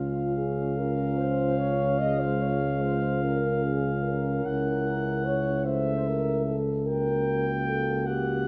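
Flowing in a rubato 12/8 with a slow, swaying lilt, this short classical brass band passage has the tender, hymn-like calm of a chorale, and it is cut from a longer piece. A warm, distant flugelhorn carries the melody high above the ensemble, while a French horn section with light vibrato sings a second line just beneath it. In the background, a smooth-topped euphonium and a vintage-toned trombone fill in soft accompaniment, and a mellow tuba sits up front, holding a single deep bass note. All five parts sound together for the full 8.5 seconds. The opening major harmony darkens into a diminished seventh chord at 4.4 seconds, adding a moment of gentle tension. A moderate recital hall reverb gives the flugelhorn and tuba a roomy presence.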